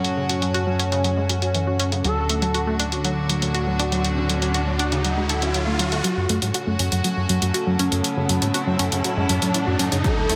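A straight 4/4 pulse at 120 BPM drives this dark, cinematic melodic techno in F# minor, where up-front, tape-warmed, low-passed electronic hi-hats and a fat, detuned sawtooth bass sit beneath sidechain-pumped, gut-toned chamber strings sustaining F#m and D chords, a smooth portamento lead with vibrato, chorus and tape echo, a bright analog pluck arpeggiating through chorus and digital delay, and a warbling lo-fi pad in the background, while an electronic riser enters at 3.2 s, filter sweeps on the pluck and lead fuel a build-up from 6.0 s, and a punchy electronic kick lands at 10.0 s, inside a moderate room reverb.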